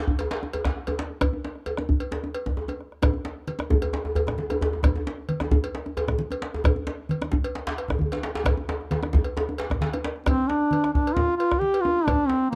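West African traditional drum ensemble music with a driving, earthy mood, set at 132 BPM in a straight 4/4 and drawn from a longer piece in Bb major pentatonic. A round bombo, a metallic cowbell and two djembes start together, one djembe deep and vintage-sounding with a band-limited tone, the other tight and cracking, sitting up front yet carrying a distant large-room sound. Both djembes and the congas are played with soft hands, and the congas join at 3.0 seconds, bright and thin-skinned despite their low tuning, with a small-room ambience. A drum fill runs from 8.5 seconds, and the cracking djembe drops out at 9.9 seconds. At 10.3 seconds a warm duduk enters up front as a folk-style solo melody with vibrato, moving between Bb3 and G4 over the continuing drums. The sound is dry and close, like a 1970s studio recording, with little reverb.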